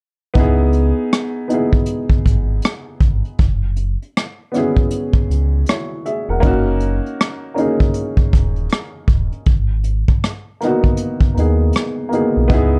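A swung 4/4 groove from a vintage brush drum kit, with its tight kick, hi-hat and rim click in a small room, carries this melancholic, reflective lo-fi hip hop excerpt, where a dark, woody upright piano with audible action noise and cassette-tape softening plays chords from C#m7 through F#7sus4 and D#m7 to G#m7 over a deep, sustained sine sub bass with octave, all in a dark production with light reverb.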